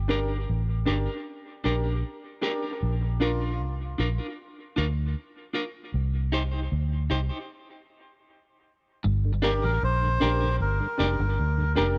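Heavy and deep, this reggae groove in G minor at 77 BPM is cut from a longer piece and rests on a dark, round, foam-muted fingered electric bass up front, with a clean picked electric guitar carrying tremolo and dub echo, woody upright piano stabs and short reedy, nasal melodica phrases also trailing dub echo through a break that stops from 7.5 s, before a slightly broken-up guitar note with warbly pitch drift at 9.0 s and a mellow tonewheel organ with slow rotary speaker in the background join as the G minor groove returns.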